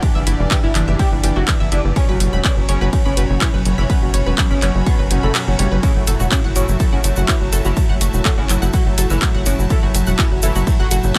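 An echo-heavy digital ambience surrounds this dark, driving melodic techno excerpt at 124 BPM in F# phrygian, where a heavy, tape-warm electronic kick anchors a small-room techno kit of handclaps, hi-hat and ride cymbal, its hats and cymbals pumping alongside a tight, punchy sequencer bass and chords moving from Em7 through Bsus2 to F#m7. A fat, detuned analog lead with phaser, chorus and tape echo carries the melody, joined by bold background synth-brass stabs, round analog pluck arpeggios, an evolving, bright wavetable pad and a faint, eerie FM bell whose inharmonic tone warbles behind the rest. Around 5.1 seconds a very quiet swell appears, the kick briefly drops out until 5.8 seconds, and a grainy egg shaker then enters close in the background.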